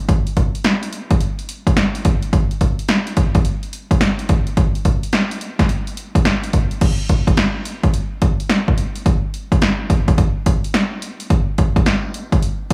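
Bouncy and punchy, this R&B drum excerpt moves at 107 BPM in 4/4 with a 16th-note swing of 64%, played entirely on an electronic, layered house drum kit of kick, snare, hi-hat and crash cymbal. The kick and snare are punchy and the whole kit sits up front, while the hats sound warm and the kit carries a tape-warm, produced character. Light reverb gives the kit a studio ambience as the passage shifts into a second section at 6.8 seconds before being cut off at 12.7 seconds.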